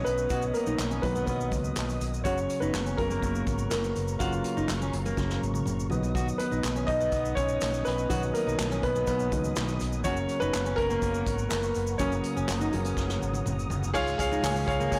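A blown-out, overdriven recording with light studio reverb carries this hopeful piano-driven pop excerpt at 123 BPM, where an up-front baby grand with long sustain takes a solo until 13.9 s over a fingerpicked jumbo steel-string guitar riff, punchy fingered electric bass, a distant, roomy unplugged drum kit played with bundle sticks that adds fills at 5.2 s and 13.0 s with soft clipping on its snare, a grainy tube shaker, and a soft, flute-like tonewheel organ holding chords in the background through chorus vibrato and a slow rotary speaker.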